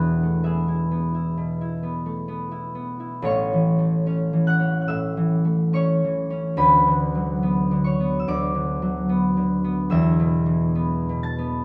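A concert harp, fingerpicked and ringing, sits up front in this dreamy, graceful classical solo piece in A major. It moves in a rubato 4/4 at roughly 61-74 BPM and spans a broad range, with its chords shifting from E to A at 3.2 seconds and on to Bm/D and E5. The instrument's warm tone blooms in a moderate stone room reverb, and the short passage is cut from a longer piece.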